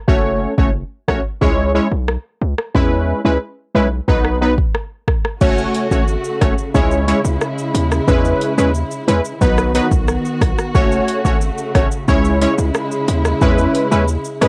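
Sultry and hypnotic, this dancehall excerpt at 90 BPM in F# dorian pairs bright, detuned synth brass stabs with chorus and sidechain pumping against a punchy, heavy 808-style bass and an up-front electronic afro-pop kit of deep kick, metallic hi-hats, rim click, shaker and crash, before a lush, woody bowed string section with vibrato enters at 5.4 seconds to hold sustained chords over the F#m, C#m, E6 and B changes, all in a cassette home recording with light reverb.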